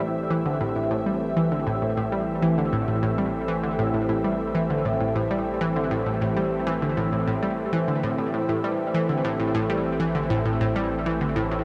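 Opening on an Am7 chord at 99 BPM, this cosmic, mysterious fragment of ambient, sequencer-driven space music in A minor puts a bright, detuned analog pluck riff with chorus and tape echo up front, beside a lush, thick unison pad holding sustained chords through chorus and phaser, while a deep, round analog bass fades in on A1 in the background, all inside a huge ambient reverb with dark, warm production.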